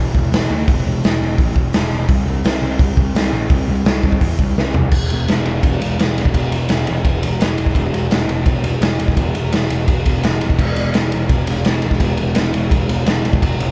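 A fuzzed, overdriven picked electric bass opens this swaggering, menacing garage rock excerpt in straight 4/4, with a dark, up-front acoustic drum kit joining at 0.1 s. The kit is built on a punchy kick, a medium-tuned snare and a rolled-off top, with hi-hat, ride, crash and toms, all caught in a bright stone room. A drum fill at 4.6 s carries the band into a new section at 4.9 s, and the whole recording has the raw, live-in-one-room sound of a duo or trio under light reverb.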